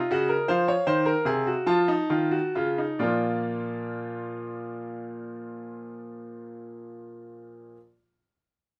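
A bright, up-front grand piano plays this serious, driving baroque-style three-part fugue alone, moving in a straight 6/8 at 43-52 BPM counted in dotted quarters, tuned to A4 = 441 Hz and spanning Bb2 to A5. Its open, brilliant tone and long sustain ring into a moderate studio ambience as the opening slows over F7sus4 and F7 harmony, arriving on Bb at 3.0 seconds. From there a new passage carries on until the piano stops at 7.8 seconds, in this fragment cut from a longer piece.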